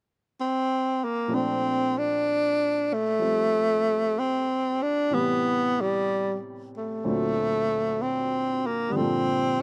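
Tender and late-night in mood, this jazz excerpt moves with a gentle swing in 4/4. A breathy tenor saxophone enters at 0.4 seconds and carries the melody within a narrow range from G3 to D4, sitting up front as the soloist with vibrato, subtone and scooped notes. A warm upright piano joins at 1.3 seconds as accompaniment, its woody, natural tone placed well behind the horn. The harmony moves from Bbmaj9 through Am9 and D7b13 to Gm7. The sound is dry and open-air, captured outdoors with little reverb.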